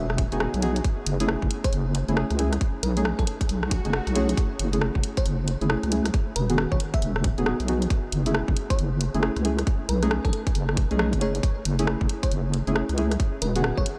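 A tape-warm, lightly reverberant two-step garage groove in F# dorian, this skippy, soulful clip from a longer piece rides a swung 136 BPM pulse. Up front, a deep, wobbling bass built from detuned square and sine tones sits low and sustained, compressed and pumping alongside the tight, layered electronic kick. Garage hi-hats and rim clicks fill out the kit with a small-room ambience. Dark, warbling chord stabs with a vintage softness and a filter sweep cycle through Emaj9, F#m7 and B13, treated with chorus and delay. Further back, a sparkling, bell-like FM electric piano picks out a melody through chorus, phaser and delay. Around 3.6 seconds a quiet electronic swell enters, and the kick drops out briefly at 3.9 seconds, returning at 4.4 seconds.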